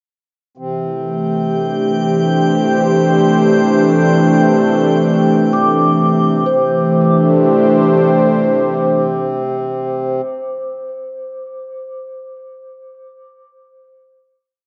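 A detuned sawtooth analog pad sits up front, holding slow-attack, chorused chords over a reedy, breathing harmonium drone to open this serene, warm ambient piece in 3/4. A glassy texture of drifting sine overtones fades in high above, chorused and bathed in its own reverb, and a soft-mallet vibraphone with fast motor vibrato enters at 5.5 seconds with ringing arpeggios through tape echo, continuing after the final chord arrives at 6.5 seconds. A long spring reverb and heavy echo wash over the mellow mix, whose highs are gently rolled off.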